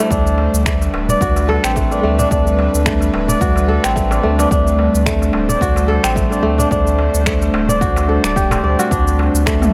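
A ringing, fingerpicked kora sits up front, spinning mellow arpeggios through tape echo over a single D7sus4 chord in D mixolydian, tuned to A4 = 436 Hz, in this peaceful organic downtempo fragment at 109 BPM with a 16th-note swing. Beneath it, an airy, breathy pad holds sustained chords with chorus and sidechain pumping, while a round sine sub bass adds deep, warm weight. A punchy, overdriven electronic kick and an overdriven deep house kit of finger snaps, shaker and toms drive the groove, and a crisp metal-shell darbuka joins in the background at 0.4 s, all set in light reverb.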